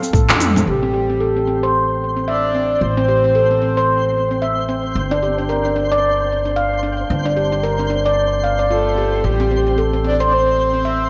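A swung 112 BPM groove in 4/4 opens with a brief drum fill of congas, cabasa, handclaps, toms and crisp hats that ends at 0.7 seconds, leaving this earthy organic downtempo passage to ringing, meditative handpan arpeggios, a woody, thumpy pizzicato upright bass, a breathy flute-like synth lead with chorus and vibrato that sings over Am7 and G5 chords, and a faint twinkling granular shimmer entering at 1.4 seconds, all set in a bright 1980s-style digital plate reverb.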